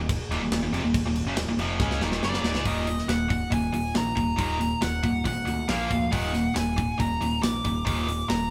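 A very quiet, lush bowed string section opens this dark, heavy metal excerpt at 138 BPM in Eb minor, holding sustained chords beneath two bright, tight distorted guitar riffs, one of them set in the background, along with a growling, round overdriven bass and an up-front metal drum kit with bright cymbals and a tight kick. The strings end at 2.6 seconds, during a drum fill that leads into the next section at 2.7 seconds. From 2.2 seconds a nasal, dark lead guitar with a parked wah and tape echo carries the melody up front, with the band sounding as if it plays live together in one moderately reverberant room.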